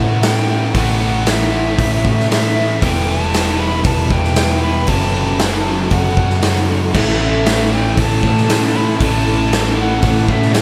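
Hazy and dreamy, this short cut of shoegaze-tinged dream-pop rock moves at 116 BPM in a straight 4/4 in A mixolydian, with an airy silver concert flute carrying the melody through delay and an unsteady vibrato over a chord path of A, Em, F#m and back to A at 6.9 seconds. Underneath, a cranked stack guitar with overdrive and lush chorus and an overdriven semi-hollow guitar with lush chorus play riffs in the background, a round, dark short-scale hollow-body bass holds the low end, and a second, very quiet semi-hollow guitar riff joins at 6.9 seconds. Up front, a gritty, saturated garage drum kit with punchy kick, crash, hi-hat and snare pumps in a bright stone room, and the whole mix is soaked in a huge ambient reverb.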